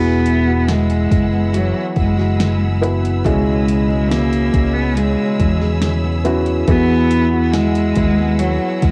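This dry, intimate home cassette recording catches a heartfelt pop ballad at a slow 70 BPM in 4/4, moving from Eadd9 to C#m7 at 3.3 seconds and back to Eadd9. A clear, bowed solo cello with vibrato carries the melody up front over a dark, woody upright piano with audible action noise, a lush symphonic string section holding sustained chords, and a quiet fingerpicked nylon-string guitar playing arpeggios with faint finger squeak. A round, punchy fretless electric bass with ensemble chorus anchors the low end, while a smooth R&B drum kit with a soft kick, fat snare and metallic hats enters at 0.3 seconds; the cello, piano, strings and drums carry a cassette tape coloring.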